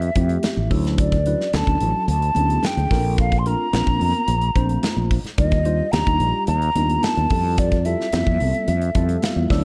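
Electric jazz fusion at 109 BPM in a straight 4/4, this slick, soaring fragment of a longer piece moves through lush major-ninth chords: Fmaj9, Dmaj9, Bbmaj9, Ebmaj9 and back to Fmaj9. A mellow, hollow concert flute carries the melody up front, close-miked with a crisp attack, airy vibrato and a slapback echo. Beneath it, a growly, punchy fretless electric bass sits direct and prominent, while a polished modern studio drum kit drives the groove with hi-hat, a medium-tuned snare and a punchy kick. A clean tine electric piano heard through a combo amp adds phaser-tinged accompaniment and plays a fill from 8.7 seconds, and very quiet high-tuned congas with a thick-skinned, vintage, band-limited tone add soft-handed color. The small room ambience lends the whole production a dark, warm intimacy.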